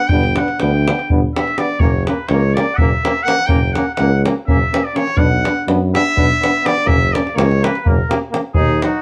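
A muted cornet, nasal and up front, carries a restless, virtuosic solo through this Balkan brass band cut at 249 BPM in a straight 7/8 and F# phrygian dominant, over a tight, saturated davul, a warm tuba bass, a brilliant trombone and a euphonium sitting in the background, with a clear flugelhorn entering only at 8.6 seconds, all in a dark production with moderate studio reverb.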